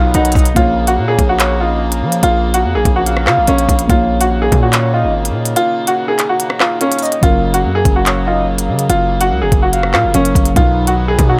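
A knocking drill drum kit with crisp hi-hats, handclaps and rim clicks anchors this menacing, dark half-time drill hip hop excerpt at 144 BPM in Bb phrygian, where a worn, woody and slightly detuned upright piano carries the melody over a heavy, aggressive distorted 808 bass, muted felt-like synth keys with chorus, reedy shimmering musette accordion chords and a mellow octave-layered synth lead with tape echo in the background, all set in a digital ambience, with the kick dropping out from 5.6 to 7.2 seconds.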